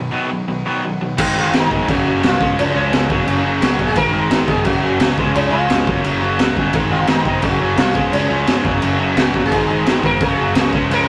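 A rough rehearsal-room recording with moderate studio reverb carries this rowdy, energetic punk rock cut, taken from a longer piece and driving at 173 BPM in straight 4/4. Three picked, overdriven electric guitars open the riff together in a short break at 0.0 seconds: a cranked stack guitar up front, a crunchy one in the background and a very quiet double-tracked distorted one. At 1.2 seconds a growly, punchy bass and a gritty, saturated small-room drum kit with a high-tuned snare, boomy kick, crash cymbal and a rolled-off top kick in, and from 1.4 seconds a buzzing, shimmering sitar with sympathetic strings plays the melody over chords cycling through Ab, Gb and Db.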